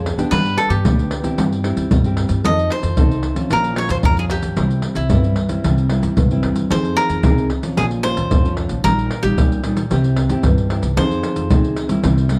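Samba and choro in F minor at 112 BPM in a straight 4/4, this short excerpt carries a bittersweet, yearning mood through a dark, lightly reverberant production. A fingerpicked nylon-string guitar with fresh strings and a classical touch supplies the accompaniment from the start, alongside a woody pizzicato upright bass on steel strings. Pandeiro, maracas and a tight surdo join at 0.1 seconds, sitting up front with soft hands and a vintage, band-limited character. At 0.3 seconds a bright, crisp picked cavaquinho takes the melody, bathed in plate reverb. The harmony moves from G through C/G and F7 to Bbm and C, then continues through Fm7, Bbm, Ebadd9/Bb and C before returning to Fm7 as the passage is cut off.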